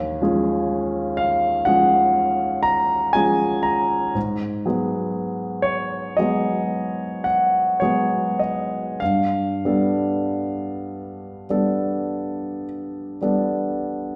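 A wet recital hall reverb with a lingering tail surrounds this serene, luminous passage of impressionist classical music for solo piano, giving the impression of being heard from further back in the room. The concert grand still comes across as present and intimate, its polished tone carrying deep bass and long sustain, with the faint sound of its action audible beneath the playing. Played with a free, rubato feel in 9/8, the piano spans a broad register from the low bass up into the upper treble. The harmony drifts through rich extended chords, moving from D#m11 at the start to G#m7 at 4.2 seconds and settling on G9 at 9.0 seconds. Cut from a longer piece, the fragment lasts 14.2 seconds and feels like a single unhurried, glowing thought.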